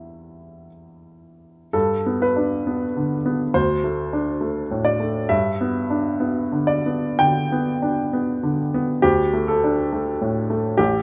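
Freely rubato in 4/4 at a slow 54-70 BPM, this brooding, passionate romantic character piece in G major features a clear, natural baby grand piano, up front with short sustain in light reverb, spanning A1 to G5 as it moves from an opening E minor into a new section at 1.7 seconds that alternates between G and D5 chords, all in a brief 11-second excerpt cut from a longer work.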